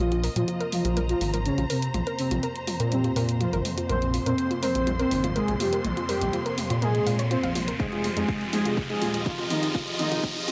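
Melodic techno at 123 BPM, a hypnotic, dark build-up cut from a longer piece, where a bold, brassy analog synth lead with chorus and analog delay rides over a gritty, saturated driven bass, a mellow pad on Bbsus2 moving to Fm7 at 7.8 s, veiled muted strings, a soft warbling pluck arpeggio, all pumping with sidechain, while a very quiet swarming drone enters at 1.9 s, an electronic riser climbs from 3.4 s through filter sweeps and a house kit's drum fill of hi-hat and toms, and a punchy electronic kick finally arrives at 7.8 s in a dry, gritty mix with light digital ambience.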